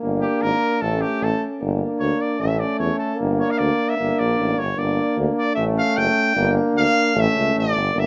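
A clear, roomy trumpet with light vibrato carries the melody from 0.2 seconds in this restless, fiery Balkan brass band fragment at 151 BPM in 2/4, over a present tuba bass line, a bright, vibrato-laden trombone and a punchy, close-miked euphonium set in the background, all shifting between G minor and A in a rough home demo mix with light reverb and small-room ambience.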